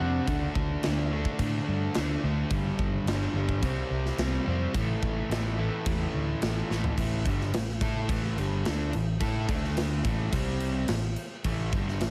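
This menacing, driving hard rock excerpt in A minor opens with a brief flash of two lightly driven lead guitars, one carrying a compressed, slightly broken-up melody with slapback echo and a very quiet, twangy second line beneath it, both gone by 0.5 s. An up-front overdriven semi-hollow guitar and a crunchy overdriven guitar with spring reverb sitting in the background play the riff at 108 BPM over a dark, round fingered electric bass. A big, acoustic rock kit with a punchy kick, bright cymbals and toms enters at 0.3 s and plays a fill at 6.7 s before the second section, all in light reverb and small room ambience.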